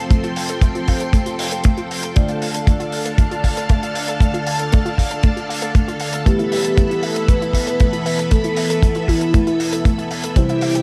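A dry, tight kick drum sits up front in this bittersweet, nostalgic italo disco fragment, alongside a dark, smooth hi-hat, lush vintage string-machine chords with ensemble chorus, a round, detuned analog pluck arpeggio with a filter sweep and delay in the background, and very quiet stabs from a worn, slightly out-of-tune tine electric piano, all moving over F and Dm until a soft octave-layered synth lead with tremolo and vibrato enters at 6.3 seconds over Esus4.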